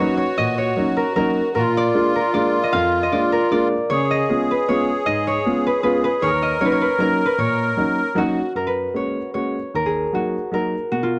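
Nostalgic and charming, this musette waltz moves in a steady three, drawn from a longer piece. A concert harp carries the melody up front with a fingerpicked, ringing tone, while an accordion adds a sweet, reedy second line with a light tremolo tuning until it drops out at 8.5 seconds. Beneath them, a clear upright piano supplies the accompaniment, woody and intimate, with long sustain and audible action noise that gives it a natural presence. The harmony moves from Ebm7 through Bb7 and Db7 before returning home, then shifts at 8.6 seconds to a new passage on F#add9 and D#m. The sound is dry and close, a 1970s-style studio recording with small room ambience that keeps every instrument near the listener.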